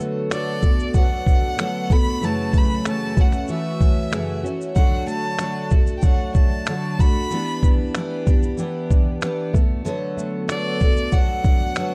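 A dark, warm and dry production frames this carefree, easy-going acoustic pop fragment at 94 BPM, cut from a longer piece and moving through Bm7/D, F#m7, D and Em7. Up front, a gritty, compressed, pitched-down trip hop sampler-style drum kit sets out finger snaps, a thumpy kick and a shaker, while a double-tracked, full-bodied picked jumbo acoustic guitar with fresh strings carries the accompaniment and a fingerpicked plugged-in jumbo adds arpeggios in the background. From 0.3 seconds, a single distant, bowed violin sings a bright, biting melody with intense vibrato and a digital delay.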